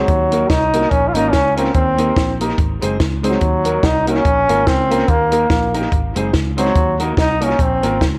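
A bright trombone leads from the opening moment of this mischievous, energetic ska excerpt, carrying a solo pop-style melody up front with a roomy, distant sheen. Beneath it, a mellow, clean electric guitar with a dark, fingered tone and a woody upright piano playing stabs sit in the background, while a fingered electric bass adds a round, foam-muted low end thickened by tube saturation. A compact cocktail drum kit comes in at 0.1 seconds with hi-hat, a punchy kick and a high-tuned snare, its dry, natural sound touched by tape echo. The groove moves at 144 BPM in 4/4 with a light swing on the eighth notes, cycling through Ebm, Bbm, Eb and Ab in Eb dorian. Moderate spring reverb and a small room give the band a lively, compact space, and the bass is the last part to stop, closing the cut at 8.2 seconds.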